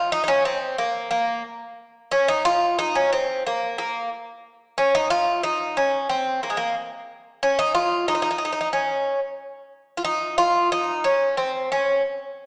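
A wet, reverberant wash from a small-sounding speaker surrounds a single Greek bouzouki, its bright, picked, metallic double strings with some octave-doubled courses sitting up front as it plays alone through this hypnotic, soulful Turkish makam fragment in a straight 4/4 from 0.0 to 12.0 seconds.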